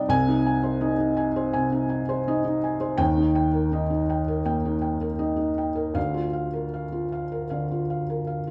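Bathed in a moderate large-studio reverb and captured live in one room, this wistful, melancholic neoclassical minimalist fragment features a solo felt-muted upright piano, dark, mellow and intimately up front, moving with rubato freedom in 4/4 through Ab/C, Eb and Bb/D chords spanning C2 to Ab5 across its brief 8.5 seconds.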